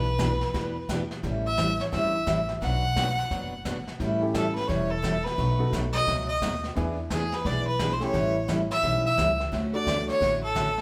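Cheerful and down-home, this western swing country clip moves at 174 BPM with a swung 4/4 feel, as a clear, focused bowed fiddle with light vibrato carries the melody up front over bright, full-bodied picked acoustic guitar, thumpy gut-string pizzicato upright bass and a dark, smooth brushed drum kit with a boomy kick, while a woody upright piano joins at 4.2 seconds, the band sounding live together in one room under a wet large-studio reverb.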